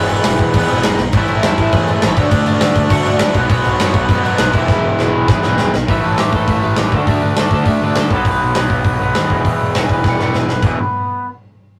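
Punk rock with an upbeat, rebellious drive, cut from a longer piece: a big, up-front acoustic drum kit with a tight kick and rolled-off top pounds out fills at 1.0, 4.7 and 10.0 seconds beneath a bright, up-front garage guitar riff, a lo-fi second garage guitar and a very quiet double-tracked crunchy guitar that stops at 8.1 seconds, while a fuzzy, overdriven picked bass rumbles in the background and a twangy, slightly broken-up lead guitar carries the melody, all captured in a rough rehearsal-room recording with light reverb and saturation.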